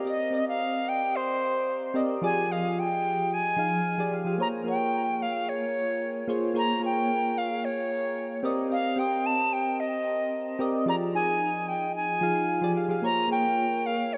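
Soft, round electric-piano-like synth keys open this smooth, wistful chillout piece at 111 BPM in Bb dorian, their mellow chords shimmering through chorus, phaser and digital delay over minor ninth harmony. A silver concert flute joins almost at once with an airy, vibrato-laden melody carried on tape echo, both parts sitting up front, and the passage shifts into a new section at 4.4 seconds. A lush hall reverb and a dark, warm production wrap this short cut from a longer track.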